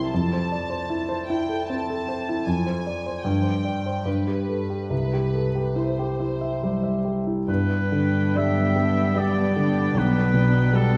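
A rubato 3/4 pulse at 66-78 BPM carries this lush, passionate romantic movement for piano and orchestra, cut from a longer piece. An up-front grand piano, polished and long-sustaining with audible action noise, shares the C major melody with a floating, pure-toned violin section. At 7.5 s the music turns to G major as a distant, roomy solo oboe and a dark second violin section add second lines, while background violas and cellos, bowed sul tasto with light vibrato, supply accompaniment and bass, all within a wet recital hall reverb and a warm production.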